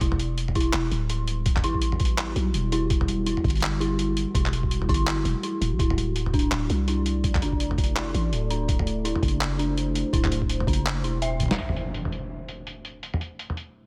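Heavy, dark half-time drum and bass at 166 BPM in E minor opens with an eerie, inharmonic FM bell arpeggio shimmering through chorus, phaser and digital delay, over a growling, buzzy 808-style bass, a thumpy, pitched-down electronic kick and a gritty, tape-warm boom bap sampler kit of claps, hats, toms and a medium-tuned snare, all moving between Emadd9 and D with a swung sixteenth feel. A deep, moody pad of detuned saws and sub-octave sines holds sustained chords beneath, carrying vintage 12-bit grit and sidechain pumping. After a drum fill at 11.4 seconds, an up-front electronic impact lands at 11.6 seconds as the bell, bass and kick drop away and a filter sweeps across the pad, which rings on to the end of this section cut from a longer piece.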